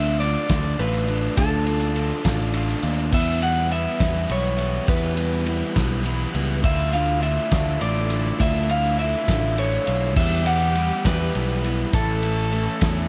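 Rolling in a straight 6/8 at 68 BPM, this upbeat, jangly indie rock passage, cut from a longer piece, moves between Dmadd9 and Emadd9 before landing on Aadd9 near the end. A slightly broken-up lead guitar through a small old amp carries the melody with digital delay, over a double-tracked, crunchy overdriven guitar riff, a round, overdriven picked bass sitting up front, and a loose acoustic kit with a fat snare, tight kick and dark cymbals. A jingly tambourine and a very quiet, swirling phased string machine hold the background, a clear trumpet with light vibrato slips in as a second line at 6.6 s, and a small room ambience surrounds the sound.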